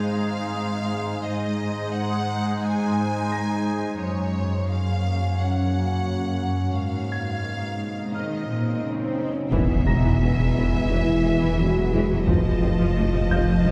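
At a straight 87 BPM in 4/4, this brooding, futuristic hybrid orchestral and electronic film cue opens with a lush, expressive violin melody over bowed cellos and a deep, moody ambient pad with chorus, while a clear grand piano with tape echo adds background texture from 3.3 seconds. An electronic swell rises from 8.1 seconds and dark, distant French horns enter at 8.5 seconds, leading to an impact at 9.5 seconds where the full section arrives: a second violin line, violas, very quiet double basses and tuba, a thick, saturated detuned saw bass, and hard-stick taiko drums. The whole is heard from further back in a wet concert hall, and the chords move from Ab through Gb and Abm to Ebm, then E and F7.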